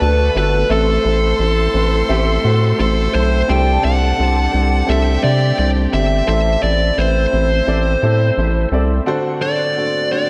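A straight, unhurried pop groove in four carries a hopeful mood in this section cut from a longer piece, where an up-front fuzz lead guitar sings the melody over a dark, woody upright piano, a round analog bass that stops at 9.0 s, a gritty overdriven tonewheel organ holding chords in the background with chorus vibrato and a slow rotary speaker, and a distant, lush bowed violin section tracing a second line until 6.3 s, all soaked in a dreamy hall reverb.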